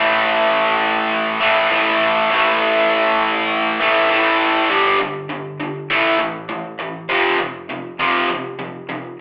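A straight 4/4 pulse at 100 BPM drives this menacing rock fragment in A minor, where a lone cranked stack guitar, bright, overdriven, picked and double-tracked up front with slapback echo, plays between F2 and A3 and shifts from A5 to G5 at 4.7 seconds before moving on through A5 to F5, captured live through the venue's PA with moderate club reverb and a telephone-like tone.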